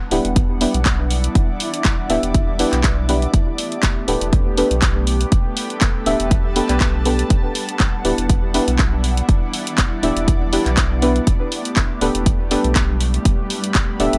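A punchy electronic kick drum sits up front in this late-night, hypnotic deep house excerpt, its tape-warm, layered tone carrying the sound of being re-recorded in a small room, and it runs from 0.4 to 13.9 seconds. At 121 BPM in 4/4 with a 55% swing on the sixteenths, a house drum kit of handclaps and hi-hat adds its own produced, small-room character, while a round sine sub bass sits deep and sustained beneath, pumping with the sidechain. A dark, nasal chord stab with a filter pluck, fast attack and short decay carries chorus and digital delay, cycling through Em7 and Gadd9 in E minor. Behind it, an airy, breathy pad with a noise layer holds sustained chords with chorus and a long release, and from 0.8 seconds a cloudy, evolving granular pad adds a blurred texture soaked in its own built-in reverb. Both pads and the stab breathe with sidechain pumping, and a light reverb places the whole mix in a gentle space.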